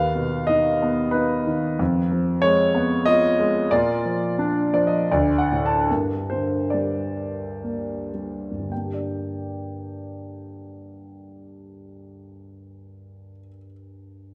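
A present, up-front grand piano with long sustain carries this bittersweet, brooding fragment of a longer classical solo piece in 3/4, moving with free rubato between 48 and 97 BPM, slowing from 3.7 s, adding a short fill around 4.4 s and settling into G minor at 5.9 s, all set in the lush reverb of a church or concert hall.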